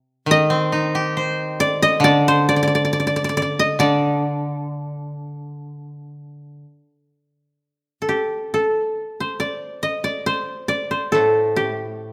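Calm and austere, this short excerpt of traditional Japanese chamber music moves at a rubato 59-70 BPM in 4/4, in D on the sen scale tuned to A4 = 437 Hz, as one bright, woody koto played with fingerpicks carries the up-front melody over a second koto's softer accompaniment, both dry in tone yet placed in a moderate recital-hall reverb, with the opening section giving way to a new one at 7.6 seconds.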